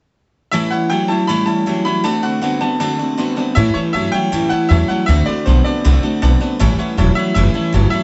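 Rowdy, upbeat rock in A mixolydian at 158 BPM, this excerpt opens at 0.5 seconds with a twangy, slightly broken-up electric guitar riff up front, a brilliant upright piano carrying the melody over a second, slightly detuned piano in the background, and a full-bodied picked steel-string acoustic guitar, before a thumpy, woody pizzicato upright bass joins up front at 3.6 seconds over the A7 and D7 changes.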